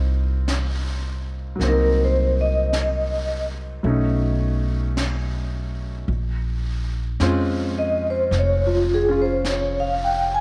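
A dark, ringing vibraphone played with medium hard mallets and a fast motor vibrato carries the melody from 1.7 seconds, sitting up front in this intimate, late-night jazz ballad excerpt at a slow 54 BPM with a gentle swing. Beneath it, a clear baby grand piano with audible action noise voices chords moving from a rootless Abmaj9 through Cm7b5 and B9 to Bbm7. A woody, thumpy pizzicato upright bass sits up front, and a brushed drum kit with a high-tuned snare and hi-hat joins at 0.5 seconds, all set in a small room with light reverb.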